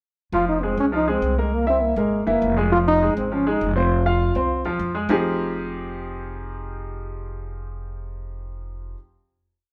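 A live-in-one-room sound with moderate studio reverb frames this fiery, driving Afro-Cuban jazz piece, where a breathy, vibrato-laden trombone states a motif-based melody until 4.8 seconds over a clear baby grand piano's octave montuno and a woody, thumpy upright bass playing a pizzicato tumbao that anticipates the chords, before the piano and bass arrive on a closing Fm9 at 5.1 seconds.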